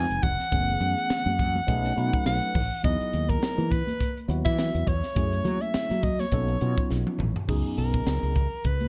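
A bright, close-miked soprano saxophone with vibrato sings up front over clean tine electric piano through a phaser and punchy fretless bass with subtle chorus, joined by a crisp, polished fusion kit with a high-tuned snare and soft-handed congas in the background, in this soaring electric jazz fusion piece at 103 BPM with a swung 16th-note feel and dark studio ambience, where a drum fill at 6.9 seconds leads into a saxophone solo from 7.5 seconds.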